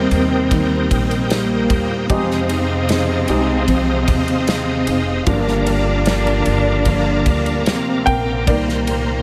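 A straight 4/4 pulse at 76 BPM carries this heartbroken, longing pop ballad fragment, with a natural country drum kit of punchy kick, medium-tuned snare and dark ride cymbal under woody pizzicato upright bass, a full-bodied jumbo steel-string acoustic guitar picking arpeggios with audible finger squeak, a warm baby grand piano accompanying in the background, a close, bowed chamber cello section singing a shadowy second line with vibrato, and a reedy, bright tonewheel organ holding sustained chords through chorus vibrato and a fast rotary speaker with key click, as the harmony moves from Eb through Fm7 and Gm7 to Cm7 in light reverb and small-room ambience.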